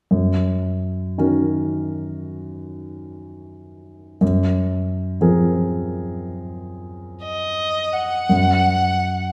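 The recording sits in a reverberant recital hall, heard from further back in the room, with a decay of about 1.5 seconds hanging around the two players. This brief excerpt of a classical, impressionist duo in Gb lydian moves slowly and freely, between 55 and 61 BPM in 4/4 with a rubato feel, and its mood is pastoral and luminous. A warm concert grand piano carries the accompaniment from 0.1 seconds, intimate and polished, with deep bass, short sustain and audible action noise as it moves from a Gb6 chord to Ab13 over Gb. A clear, bowed solo violin enters with the melody at 7.2 seconds, focused and faintly distant, with vibrato. Near the close, the harmony moves outside any named chord as a brief new section begins at 8.3 seconds.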